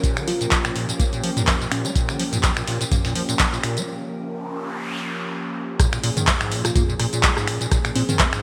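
Playful and raw, this acid house passage at 125 BPM, with a light 16th-note swing, rides a squelchy, resonant square-wave acid bass riff in Bb minor, treated with lush chorus, 12-bit sampler grit, delay and sidechain pumping, over a tape-warm deep kick, a dry, up-front analog drum machine of snaps, claps, hi-hat, rim clicks, tambourine and toms, and a very quiet, gritty sampler-style kit with a fat snare. A smooth, detuned sawtooth pad holds sustained chords throughout, while a cloudy granular pad drifts in the background until 3.9 s and a bell-like, sparkling FM electric piano adds brief chorused, delayed melodic phrases near the start and end. After a break from 3.9 s, an electronic noise sweep leads into the drop at 5.8 s, the track sitting in a moderate hall reverb with bright 1980s-style digital production.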